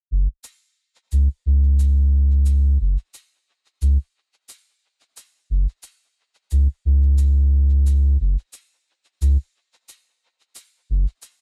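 A deep, round sub bass sits up front, its soft triangle and square wave tone starting with a fast attack and sustaining low between F#1 and C#2 from 0.1 s. This spacious, hazy ambient dub fragment moves at 89 BPM in 4/4 with a light 16th-note swing. A distant, roomy cabasa with a rolled-off top enters at 0.4 s, faint beneath the bass and trailing dub echo in a dry, echo-heavy mix.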